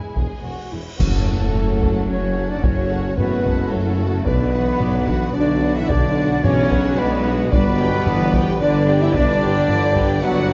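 A relentless 110 BPM pulse in 3/4 drives this dramatic, epic orchestral film-score excerpt in F# minor, with a close, dry taiko ensemble struck with heavy sticks pounding beneath woody bowed double basses, rich cellos and a clear, vintage tuba from 0.2 seconds. A huge cymbal swell rises at 0.4 seconds before bright clash cymbals and concert bass drum land with the band accent at 1.0 seconds, where an airy, distant flute and very quiet, roomy trombones join the mellow French horn chords. Two vibrato-rich violin lines, one smooth and even and the other lush, and expressive violas with portamento sit in the background of a dark, wet scoring-stage sound.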